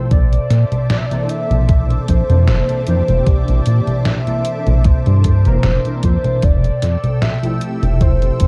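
A velvety synth lead with chorus and tape echo opens this nostalgic, faded vaporwave excerpt at a slow 76 BPM, alongside warbling, detuned lo-fi synth keys and a lush, bright unison pad with chorus and phaser. From 0.1 s a glossy, dark chorused synth bass sits up front beside a detuned 8-bit drum machine with congas, hi-hat and a fat, tape-warm snare, while an overdriven, thumpy electronic kick anchors a lightly swung 4/4 groove. The harmony rests on Bbmaj9#11 before moving to Fmaj9 at 6.4 s, all under light reverb and a cassette-tape sheen.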